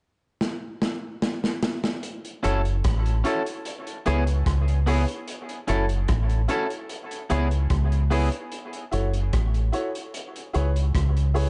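A deep, round fingered electric bass sits up front in this spacious, meditative dub reggae excerpt at 74 BPM in F# minor, where a crunchy, saturated breakbeat kit opens with a fill from 0.4 seconds before twangy, slightly broken-up electric guitar and clear, woody upright piano stabs arrive at 2.4 seconds, both drenched in dub echo over an F#m7 to C#m7 sway in an echo-heavy mix with light studio reverb.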